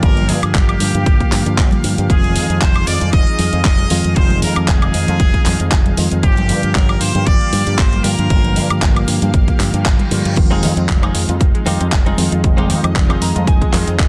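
The sound is dense and dry, heavily limited, with a punchy, layered electronic kick up front. This sleek, cosmic nu-disco clip moves at 116 BPM in 4/4 with a light 16th-note swing in F dorian, shifting between Gm7 and Fm7. A brilliant, nasal section of straight-muted trumpets with light vibrato carries the melody through tape echo until 9.1 seconds. Beneath it, a mellow tine electric piano with delay and a thick, detuned unison pad with chorus both pump with sidechain compression in the background. A bright, punchy fingered bass with an envelope filter drives the low end, joined by a pop drum kit with metallic hats, handclaps, crash, woodblock and a softly clipped snare, plus very quiet egg shaker and hard-hand congas. A background reverse cymbal enters at 9.8 seconds. From 10.4 seconds a very quiet, wave-folded analog pluck adds arpeggios, and from 10.5 seconds a clean, compressed, direct-recorded electric guitar picks a filtered, delayed riff and ends on a fill.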